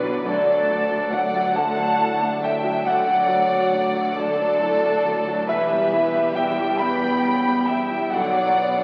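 In a rubato 6/8 at 46 BPM by the dotted quarter, this bittersweet, moving cinematic film-score fragment sets a close, focused violin section on the melody, with a distant, smooth second violin line and an airy, hollow silver flute on a second line from 0.2 seconds, over lush violas, an intimate grand piano with audible action noise, tight, mellow French horns holding chords, and cellos and double basses bowing the bass beneath D, Em and Bm harmonies, all heard through a concert hall's reverb and the crackle of a very old 78 rpm record.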